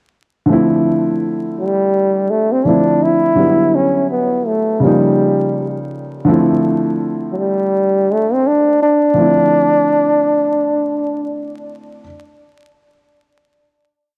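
Mellow, cool hip hop at 83 BPM with a 16th-note swing in D minor, where a dark, intimate grand piano with audible action noise enters at 0.5 seconds holding short-sustained rootless chords on cassette tape, and a breathy, up-front jazz trombone joins at 1.6 seconds with a motif-based solo melody full of vibrato and scooped notes, colored by tape and analog delay, all set in a lush hall reverb with a vintage home-cassette character and vinyl crackle.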